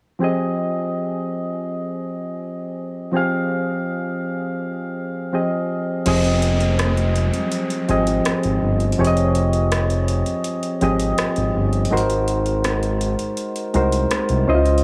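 Round, chorused electric-piano-like synth keys open this sensual, late-night contemporary R&B excerpt in F minor at 82 BPM, holding an Fm7 alone until a mellow sawtooth synth bass and an overdriven trap kit of crash, metallic hi-hat and rim click arrive at 6.1 s with a downlifter in the background, before the harmony moves to Ab7 at 11.9 s, the whole set in a light small-room reverb.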